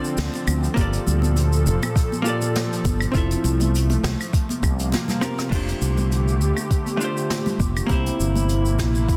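A gently swung sixteenth-note groove in 4/4 sets a blissful, sunny sunset chillout mood in this short excerpt from a longer piece. A brushed jazz kit plays from the start with hi-hat, shaker, rim click, claves, crash and a medium-tuned snare carrying soft clipping. A round, punchy fretless electric bass sits up front from 0.2 s, and a soft, tape-warm electronic kick joins at 0.8 s, while bright, high-tuned congas with hard hands stay close, dry and in the background. A dark, clean, picked hollow-body jazz guitar comps with tape echo, and a breathy, nasal pad of detuned sawtooth and triangle tones with a noise layer swells in slowly with chorus to hold sustained chords. The harmony moves through Dm7, Gm9, Fmaj7 and C7sus4 before a drum fill at 5.1 s leads into a second section built on F69 and C7. Light reverb and small room ambience frame a dense, heavily limited modern master.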